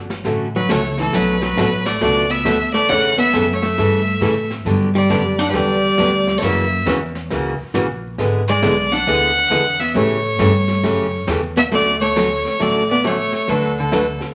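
A wet, large studio reverb and a layer of vinyl crackle give this short cut from a longer western swing piece a down-home, well-worn sheen. At 136 BPM in 4/4 with a swung eighth-note feel in D major, it moves along with an easy, swinging country lilt. A clear, boxy fiddle with light vibrato and an airy bow carries the melody up front, entering at 0.6 seconds and playing with real intensity. Beneath it, a bright, full-bodied steel-string dreadnought guitar picks the accompaniment with audible finger squeak, while a dark, clean, compressed hollow-body archtop adds a second line. A woody, thumpy pizzicato upright bass anchors the low end, and a brushed jazz kit with a high-tuned snare sits in the background. The chords travel from Dmaj7 through Bm7, Gmaj7, F#7 and A7, returning to Dmaj7 at 11.7 seconds as a new section begins before the cut ends around 14.3 seconds.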